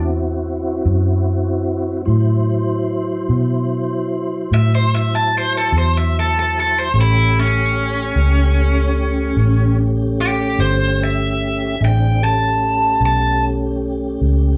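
A slow 12/8 blues at 49 BPM in dotted quarters, laid-back and soulful, this excerpt opens on a mellow tonewheel organ holding sustained chords through a slow rotary speaker with chorus vibrato and a touch of key click, over a dark, round, foam-muted fingered electric bass that sits punchy and up front. At 4.5 seconds a bright overdriven electric guitar enters with a picked solo melody, riding over the harmony as it moves from a rootless D9 to A9 at 6.9 seconds. The band plays live together in one large studio room, with moderate reverb.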